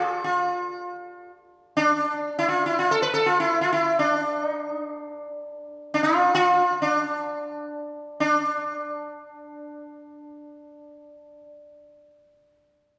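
Longing and solemn, this Hindustani classical excerpt unfolds in free time as a solo sitar explores raga Shivaranjani in D, tuned to A4 = 441 Hz, staying between D4 and B4. The plectrum-plucked sitar sits up front with a buzzing tone and shimmering sympathetic strings, carried by a generous recital-hall reverb that lends it a churchlike resonance. The playing moves into a new passage at 8.2 seconds before the sitar stops at 11.4 seconds.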